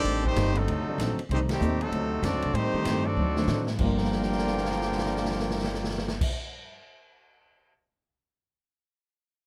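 A light reverb and a roomy studio sound frame this brief, sultry big band swing fragment, cut from a longer piece. Up front, a tight trumpet section carries the melody with a clear, soft-attacked tone and smooth top. Behind it, a trombone section with light vibrato supplies a second line. A woody pizzicato upright bass anchors the low end, and a distant drum kit with a medium-tuned snare and boomy kick drives the swing, playing a fill at 3.2 seconds, while the whole band hits an accent at 1.5 seconds. A very quiet, intimate grand piano, with audible action noise and deep bass, joins a clean, picked hollow-body archtop guitar in the accompaniment, as the harmony circles between half-diminished and altered dominant chords before settling on a minor chord at 3.8 seconds.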